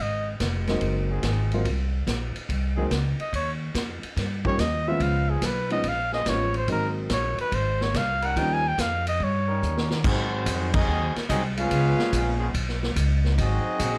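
Brassy and energetic, this big band swing passage moves at 144 BPM in 4/4 with a swung eighth-note feel, centred on Ab mixolydian before settling into Ab major at 10.0 s. A solo trumpet carries the melody with vibrato and scooped notes over a smooth top, soloing through the first 10 seconds, while a woody, bright pizzicato upright bass sits up front under the whole passage. A vintage drum kit with dark cymbals, a punchy kick and a rolled-off top drives the swing, and a warm, short-sustained upright piano comps until 8.6 s as a tight trombone section holds chords in the background. After a drum fill, the second half brings in a clear, close-miked trumpet section on the melody and a punchy trombone section on a second line, with a band accent at 10.7 s. The production is dark and warm with light reverb, and the passage is cut from a longer piece.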